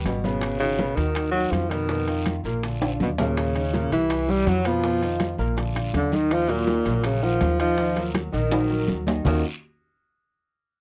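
Sophisticated and fiery, this short Afro-Cuban jazz excerpt moves at 163 BPM in Eb minor, with a breathy, vibrato-laden tenor saxophone out front scooping into notes over a woody pizzicato upright bass and an intimate grand piano whose action noise and long sustain are audible. A bed of percussion drives underneath, from ringing metal-shelled timbales and bright, damped congas to very quiet round bongos, raspy guiro and grainy maracas. A dark baritone saxophone joins in the background at 3.0 seconds, and drum fills at 2.8 and 8.5 seconds punctuate a dry, close 1970s-style studio sound touched with light reverb.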